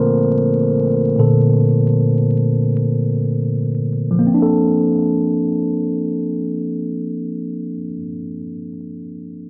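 This lo-fi hip hop fragment, cut from a longer piece, floats in free time in Bb major with a cosy, nostalgic mood. A mellow tine electric piano carries it alone from 0.0 to 9.5 seconds, ranging from Bb2 up to C5 and sitting up front in the mix. Its tone is clean yet coloured by cassette tape, heard as if through built-in speakers, opening on a Bbmaj9 chord. A filter sweep shapes the first stretch up to 4.3 seconds, after which a new section begins and runs to 7.3 seconds. A small, wet room ambience surrounds the playing, and vinyl crackle and a low-pass filter lend the recording a softened, worn character.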